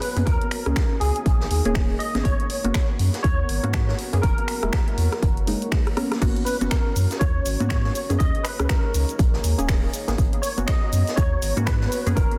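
Deep house with a late-night, hypnotic mood, cut from a longer piece and riding a swung sixteenth-note groove. A punchy, up-front layered electronic kick and a round, sine-like sub bass anchor the low end, while a dry analog drum machine scatters crash, finger snaps, hi-hat, rim click and shaker over a softly clipped snare. Behind them sits a vintage acoustic kit with a rolled-off top, adding hi-hat and a medium-tuned snare in the background. A muted, detuned sawtooth dub chord stab pumps against the kick through phaser and analog delay, and a moody, warbling ambient pad with chorus and reverb sustains dark chords far behind, also pumping. On top, a bright, barky tine electric piano carries the melody, lightly overdriven through a combo amp with ensemble chorus and delay, over chords such as G#m11, D#7sus4 and F#7. A drum fill at 5.8 seconds leads into the drop at 6.2 seconds, all within a dense, heavily limited modern master with light reverb.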